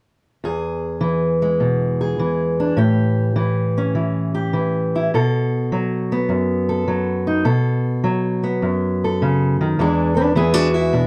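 A swung eighth-note lilt in 4/4 drives this short, soulful and swaggering stretch of acoustic country blues, cut from a longer piece. A lone fingerpicked steel-string parlour guitar, dark and boxy in tone and placed up front, plays from 0.4 seconds, moving through E, A7 and B7 before settling on an E7 at 9.8 seconds, where a new section begins and runs to 11.1 seconds. Close, detailed microphones capture the guitar inside a moderate studio reverb.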